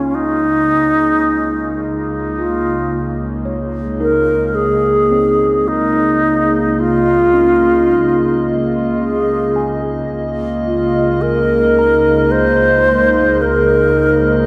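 A pure, bright alto flute sits close and up front with vibrato and delay, carrying the melody over a single Dbmaj9 chord in this warm, luminous ambient piece at 54 BPM in 3/4, while a warbly, nostalgic tape-like pad with chorus and phaser, a worn, slightly out-of-tune tine electric piano playing delayed arpeggios in the background, and a rich bowed double bass section holding a low Db each fade in across the 14.5 seconds, the dreamy mix soaked in a lush hall reverb.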